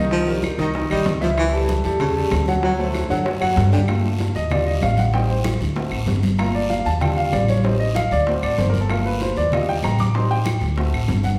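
A driving 192 BPM salsa groove in straight 4/4 is set by thick-skinned congas, round, low-tuned bongos and claves in the background, a raspy guiro, and a thumpy pizzicato upright bass up front in G minor. A breathy, whispered baritone saxophone with vibrato carries an intimate second line until 3.8 seconds, while the clear, worn baby grand piano accompanies and then takes a fiery solo from 3.9 seconds over a repeating Gm7, Ebmaj7, Am7b5, D7 cycle. The fragment is cut from a longer piece and rings in a reverberant recital hall.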